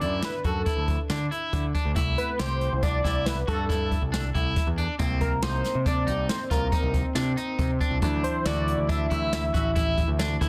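Bright, driving progressive instrumental in 7/4 at 138 BPM, where a fat, nasal, detuned analog lead carries the melody with chorus, plate reverb and tape echo over up-front brushed drums with a boomy kick and softly clipped snare, a warm overdriven picked bass, twangy arpeggios from an electric guitar at the edge of break-up, and a dark, compressed hollow-body jazz guitar in the background, while a clear trombone with light vibrato joins on a second line at 5.0 s as the chords move from D through C6 and Abadd9/C to Dadd9 in a dense, heavily limited mix.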